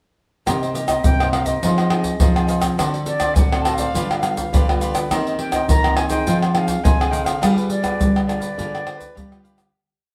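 A straight 4/4 samba groove at 104 BPM drives this short, nostalgic and bittersweet piece of samba and choro in C minor. The groove comes from tight surdo, pandeiro, tube shaker and tamborim, played with soft hands and placed up front. Beneath it, one nylon-string guitar thumb-plucks a dark samba bass figure, while a second nylon-string guitar fingerpicks thumb bass and syncopated chords, and the cavaquinho strums crisp, mellow sixteenths through a progression that moves from Cm7 and Fm7 through D7 to a closing G7b9. A wooden flute carries the tune in an airy, straight, tongued tone, building sentence-like phrases from short motifs. At 8.9 seconds a faint overdriven harmonica slips in, gritty and punchy with tongue slaps, scooped notes and light vibrato, placing jazzy answering phrases in the flute's rests. The band sounds as if it is playing live in one room, bathed in wet studio reverb, as the piece fades out from 7.4 seconds to its close at 9.7 seconds.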